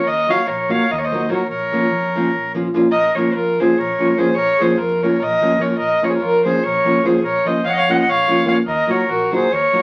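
A dark, bowed fiddle opens this restless, fiery fragment of Balkan wedding-band music, carrying the melody up front with light vibrato and a woody sul tasto tone that sounds slightly distant. Beside it, a reedy accordion plays a second line a little further back, while a growly pizzicato upright bass with steel strings sits low and quiet underneath. A small, fingerpicked nylon-string guitar joins at 0.3 seconds, placed up front with accompaniment in a warm acoustic voice. The tune drives along in a straight 7/8 at 292 eighth-note beats per minute in Bb minor, moving from Ebm to Bbm and into a second section at 2.9 seconds, then back to Ebm at 8.7 seconds. A wet studio reverb and the crackle of a very old 78 rpm record give the whole cut an aged character.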